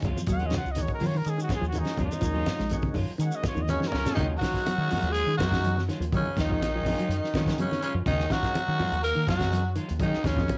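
An afrobeat groove at 124 BPM in Eb minor opens on a full band vamping over a single Ebm11 chord, with a warm soul drum kit, fat in the snare and tight in the kick, alongside low-tuned congas, a grainy shekere and a round, dark fingered bass that sits heaviest in the mix. Behind them, a clean hollow-body guitar plays arpeggios, a slightly broken-up electric guitar adds picked stabs, and a thick, lightly overdriven tonewheel organ turns on a slow rotary speaker with chorus vibrato and plate reverb. A breathy, whispered trumpet carries the melody from 0.3 seconds in an intimate jazz style, and a drum fill at 3.6 seconds hands the tune over. From 3.7 seconds a growling tenor saxophone takes the lead up front, with a raspy baritone saxophone and a very quiet, edgy second tenor beneath it, while the shekere drops out at 4.2 seconds. The mood is defiant and hypnotic, and the cassette home recording lends its tape character to the drums, guitars, organ and baritone in a moderate room, with the clip cut from a longer piece.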